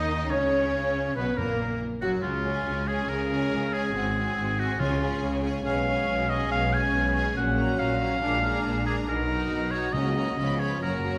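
In a brisk, straight 4/4 at 140 BPM, this stormy, dramatic fragment of a fast romantic symphonic movement carries its melody on a rich, vibrato-laden violin section set back in the mix, while a clear solo oboe sits up front with a second line, joined by a smooth, even chamber violin section. Lush violas fill in the accompaniment, a mellow French horn section holds chords, and a bright, intense cello section pairs with a warm, smooth double bass section in the low register. Round, very quiet timpani touch in from 1.4 s and close with a fill at 10.8 s, all within a reverberant scoring-stage ambience.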